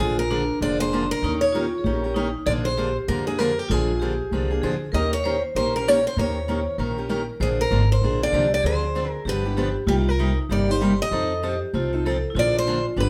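Acoustic string swing in the jazz manouche style, this lively, swinging cut from a longer piece moves at 194 BPM in Bb mixolydian, running through a blues-flavoured progression from Bb7 to Eb7 and back through Dm7b5, G7, Cm7 and F7. A boxy, parlour-sized picked steel-string guitar carries the melody up front while a vibraphone struck with hard mallets, metallic and ringing with its motor off, plays a close-miked second line, and a second picked guitar with fresh, concert-sized brightness handles accompaniment. An up-front upright bass with gut strings gives a woody, thumpy pizzicato bottom, and the whole band plays live in one room with a wet studio reverb.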